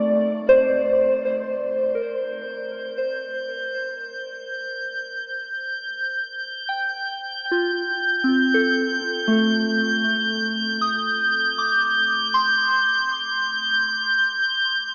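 A soft FM synth bell sits up front, spinning gentle arpeggios between A3 and Eb6 in a serene, luminous ambient passage in free time. The bell's pure tone, with its fast attack and decaying notes, is coloured by chorus, tape echo and shimmer reverb, and it fades in gradually from 1.6 seconds as the harmony settles onto Ebmaj7 in Eb lydian, tuned to A4 = 441 Hz. Beneath it at the very start, a very quiet drone blending sawtooth and sine waves sweeps through resonant, evolving overtones before it stops at 1.7 seconds. A glassy texture of sine tones then drifts in at 2.3 seconds, holding a high G6 with calm, slowly shifting harmonics, chorus and shimmer reverb, and it sits just as far forward as the bell. The whole excerpt is bathed in a huge, wet ambient reverb with a 7.4-second decay, yet it comes across with a small-speaker sound, and it is cut from a longer piece.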